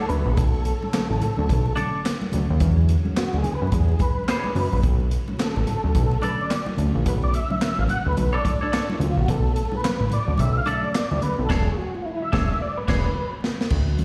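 A swung sixteenth-note funk groove in 4/4 drives this short cut from a longer piece, anchored by a big-band drum kit whose punchy kick, medium-tuned snare, hi-hat, handclaps and crash cymbal sit up front with an airy, polished hall sound, joined by close, ringing congas that drop out at 11.4 seconds. A fat, detuned sawtooth analog bass with a filter sweep and fast, decaying attack sits just as far forward, grounding the funky, driving mood over a Bm9 to E13 vamp. The round, dark tonewheel organ carries the melody as a solo throughout, its chorus vibrato, slow rotary speaker and slapback echo giving it a mellow glow. A bright, twangy clean electric guitar, picked and compressed with slapback echo, supplies accompaniment, while a reedy electric piano with fast tremolo adds background stabs through its built-in speakers. Shimmering, full-bodied violin chords from a vintage string machine hold underneath, and the band hits an accent from 11.5 seconds with a drum fill at 12.6 seconds, all heard as a live gig through the venue's PA with club reverb and vinyl crackle.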